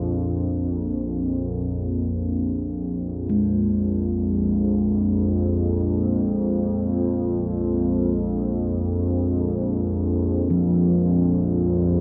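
This is world meditation music in free time, haunting and spacious, heard as a fragment cut from a longer piece. A deep, dark ambient pad holds a low drone from the opening, its detuned sawtooth and sine layers with a sub octave giving a moody, warm, vintage tone that sits up front, colored by chorus and its own reverb with a slow attack and long release. At 3.3 seconds a bronze singing bowl enters as a soft texture, struck with a felt mallet, its metallic ring mellow and marked by a slow beating. The whole recording sits in a church reverb with a 3.5-second decay and carries the worn character of old cassette tape, with a warbly pitch drift. The bowl's ringing tone hangs over the dark drone until the fragment ends at 12.0 seconds.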